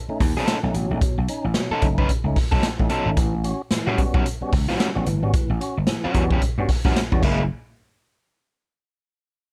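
Gritty and funky, this short cut from a longer funk piece rides a swung sixteenth-note feel in 4/4. A vintage slap bass sits punchy and amped up front, while a swinging big-band drum kit of kick, snare, hi-hat and crash sounds distant and roomy, with dark cymbals and a rolled-off top. A crunchy overdriven electric guitar, picked and placed forward in the mix, supplies accompaniment, and a fat tonewheel organ adds stabs through light overdrive and a fast rotary speaker, its key click audible. The harmony moves from B9 to A13 at 3.2 s and touches F#9 before the band drops out around 7.4–7.5 s, giving way to a closing stretch where the harmony falls away. The recording carries little reverb.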